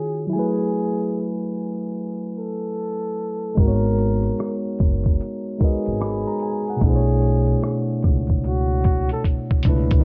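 Lo-fi hip hop with a nostalgic, melancholic mood, this short cut from a longer piece rides a swung 4/4 groove. A clean, up-front tine electric piano carries the chords throughout, moving through Gbm11, Abm11 and Bm11 with a cassette-tape tint. Over it, a breathy flugelhorn plays a mellow, jazz-style solo melody with light vibrato, soft attacks and scooped notes, trailed by tape echo and plate reverb. At 3.6 seconds a pizzicato upright bass with a woody, dark gut-string tone enters together with a compressed, sampler-style drum kit of muffled hi-hat, thumpy kick and rim click. The flugelhorn stops at 9.2 seconds as the drums play a short fill to close. A filter sweep runs across the whole passage, and the mix has a moderate room reverb and a hazy cassette, low-pass softness.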